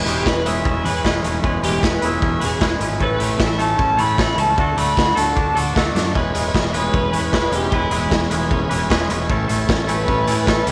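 A straight 4/4 pulse at 153 BPM drives this carefree, wistful slice of indie rock in E mixolydian, tuned to A4 = 436 Hz, cut from a longer piece and moving through E6, A and D. A raw garage drum kit sits up front with a punchy kick, medium-tuned snare and hi-hat in a bright stone room that pumps, saturated and gritty with a rolled-off top, while a growly fuzz fingered bass adds overdrive and two twangy electric guitars play riffs, one clean, fingered and compressed, the other picked and set in the background with analog chorus and slapback echo. Over them an overdriven electric guitar takes a picked solo with phaser and slapback echo across the whole stretch, and from 6.1 seconds a very quiet tonewheel organ adds piping, scooped sustained chords through a slow rotary speaker with key click and chorus vibrato, all under light reverb and studio ambience.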